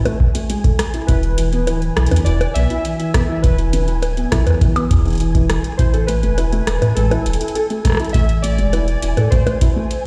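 This short cut from a longer piece sounds as if it is played through a big sound system in a bare stone room, with the instruments themselves kept fairly dry. It is an intricate, melancholic IDM track at 102 BPM in 4/4 with a straight feel, set in A harmonic minor and tuned slightly low to A4 = 436 Hz, moving from A5 to E at 1.1 seconds and settling on A minor at 5.8 seconds. A felt-muted upright piano plays soft, dark arpeggios from E2 to A4, its thick felt and audible action noise giving an intimate touch, echoed by a digital delay. A deep electronic kick anchors the beat, while an electro analog drum machine adds bongos, rim clicks and metallic hi-hats through a delay. From 1.1 seconds, a round sine sub bass sits up front, and warbly lo-fi synth keys carry a nostalgic melody between A4 and E5, their detuned sawtooth and triangle tones shaped by a filter sweep, chorus and delay. Behind it all, a flickering granular texture holds a G#5, its slow attack and long release blurred by its own reverb and pumping to the beat.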